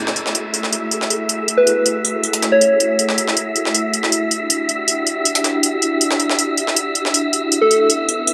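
This frenetic, dark drum and bass cut moves at 159 BPM in a straight 4/4, driven by an up-front, compressed breakbeat kit of hi-hat, snare and tambourine, pitched up and gritty, with a medium-tuned snare and high-pass filtering thinning the hats, snare and percussion. Beneath it, a soft string machine holds silky, warbling sustained chords with slow attacks and long releases, softened by ensemble chorus as the harmony moves from F#m9 to Em9 at 4.1 seconds. Above, a breathy, wind-like tuned noise texture drifts high in its own built-in reverb, airy yet shadowed. A round, keys-like FM lead with a sub octave strikes brief, decaying phrases between 1.6 and 3.0 seconds and again near 7.6 seconds, its chorus and dub echo lending a bright shimmer. The dry, hardware-recorded sound sits in a small room with a moderate plate reverb, giving this short section of a longer piece a raw, gritty edge.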